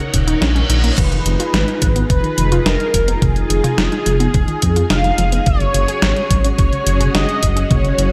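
Moody, nocturnal synthwave at 107 BPM, this short cut from a longer piece opens on Ebm7 with a reverse cymbal alongside a thumpy, tape-warm electronic kick, a detuned 8-bit drum machine with gated reverb on its crash, hi-hat, medium-tuned snare and toms, a deep, rumbling detuned saw bass with tube saturation up front, lush string machine chords pumping under sidechain, and a warbling unison pluck with delay arpeggiating in the background, while from 1.0 s a round, evolving synth brass melody with chorus, phaser and digital delay rides over Fm7b5 and Gbsus2 in light reverb.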